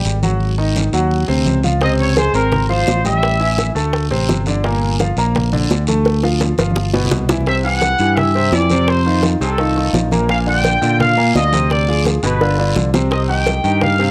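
A straight 4/4 salsa groove at 170 BPM in C minor, this passionate, danceable cut from a longer piece is carried by a punchy, up-front fingered electric bass, a clear concert grand piano with audible action noise, damped background congas, tight high-tuned bongos from 1.8 seconds and a raspy guiro. A bright, tight trumpet section with light vibrato and a vintage cassette-tape colour takes the melody in a short burst from 1.8 seconds, then returns at 7.5 seconds to lead the second section through to the end. Drum fills arrive at 6.1 and 12.4 seconds, and moderate studio reverb frames a home cassette recording whose harmony moves through chords such as Dbmaj7, Gm7 and Cadd9 before settling on Cm.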